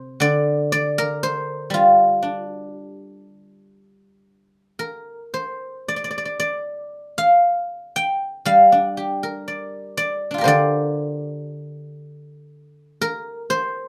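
A solo guzheng carries this brief, elegant Chinese traditional piece, its acoustic strings plucked with fingerpicks and sounding bright, silvery and ringing from a place up front in the mix. The music moves in a free, rubato feel around a slow pulse of about 59 BPM in 4/4, set in the G yu mode. Across its range from C3 to G5, the guzheng fills the space alone from the opening second to the close at 13.9 seconds. A light reverb surrounds the instrument, adding a gentle sense of air to its contemplative mood. The passage falls into two parts, with a second section beginning at 6.4 seconds, and it is cut from a longer piece.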